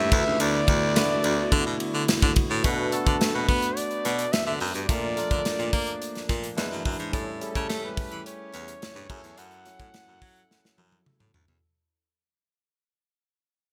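A bright, forceful baritone saxophone carries the bass line up front in this breezy, upbeat slice of polished 1980s jazz-funk pop, its close-miked tone punchy and touched with vibrato. Over it, a warm flugelhorn sings the pop-style melody with light vibrato, while a barky tine electric piano, lightly overdriven through a combo amp and thickened with lush chorus, fills in the accompaniment. A hollow, flute-like pad with a slow attack and long release sits very quietly beneath, holding sustained chords. A modern studio drum kit, airy and up front with a punchy kick, medium-tuned snare and bright cymbals, drives a straight 4/4 at 107 BPM under gated reverb, rounding things off with a fill at 10.5 seconds. Cut from a longer piece, the music moves from D69 through Bm7, Bbmaj7 and dominant chords to F#m7, fading out from 2.6 seconds amid a gleaming, digital production sheen.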